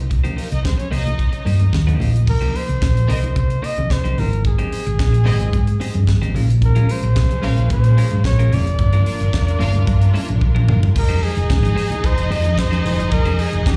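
A straight disco groove comes from a dry, airy funk drum kit with a high-tuned snare and tight kick, a dark, round hollow-body bass sitting up front, softly played congas ringing in the background and a bright, twangy clean electric guitar, while a lush, bowed violin section carries a second line from 0.4 seconds. A pop-style flugelhorn with light vibrato and scooped notes takes the melody at 2.3 seconds, and a rich string section adds sustained chords in the background from 6.6 seconds before a drum fill leads into a closing Fm9 chord. This glamorous, danceable cut sounds like a live club gig heard through the venue's PA, with plate reverb on the guitar, violins, flugelhorn and strings, and slapback echo on all but the strings.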